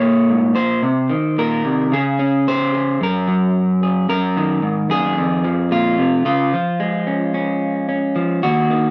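The sound is close and detailed, with little reverb, so the single instrument sits up front with every nuance audible. This is a melancholic, haunting folk excerpt in the solo fingerstyle guitar vein, moving at 110 BPM in a straight 4/4, tuned slightly under standard to A4 = 439 Hz. The only voice is an electric guitar through a small old amp, playing solo from 0.0 to 8.9 seconds; its tone is warm and slightly broken-up, and the picked notes range from Eb2 to Db5. The harmony drifts from Bbm through Bbsus24, Db5, Gbadd9, Ebm/Gb and Fm7 before settling on Db at 6.3 seconds. The result is a brief, intimate and shadowy fragment cut from a longer piece.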